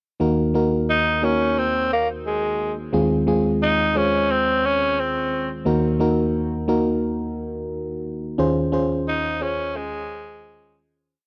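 A breathy, raspy tenor saxophone enters at 0.9 seconds with a motif-based melody of short call phrases, its tone thickened by tape echo. Beneath it, a warbling, mellow FM electric piano, already sounding from 0.2 seconds, pushes close-voiced chords with a fast attack and a noise layer, moving from Ebm through Fm/Eb and back to Ebm before settling on Dbmaj7/Eb. This brief, nostalgic yet urgent pop piece has the dry, close sound of a 1970s studio with light reverb, and it fades out from 8.4 seconds to its end at 11.1 seconds.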